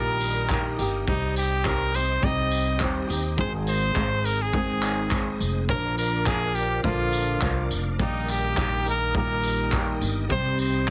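Acoustic pop in C minor at 104 BPM with a light swing on the sixteenths, reflective and tender in mood, this short cut from a longer piece sets a brilliant, up-front trumpet melody with vibrato and scooped notes over double-tracked, fingerpicked flamenco guitar and a woody pizzicato upright bass on steel strings. A reedy tonewheel organ with key click and fast rotary speaker holds very quiet sustained chords high above, while a loose indie drum kit of handclaps, punchy kick and tambourine, gritty and saturated with a rolled-off top, joins at 0.2 seconds. The harmony moves from Eb over Bb through Cm, Ab and Bb, all under light reverb and a heavily compressed, radio-like sound.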